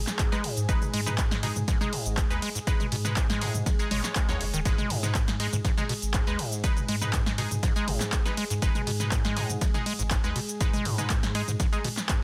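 An overdriven, up-front electronic kick drives this raw acid house excerpt alongside a punchy analog drum machine with hand claps, cabasa, hi-hat, ride, snare and toms, a squelchy, resonant square-wave acid bass riff with tape echo, a thick saturated sub bass, nasal band-passed chord stabs and a moody, detuned sawtooth pad with 12-bit grit pumping beneath them on a G#m chord.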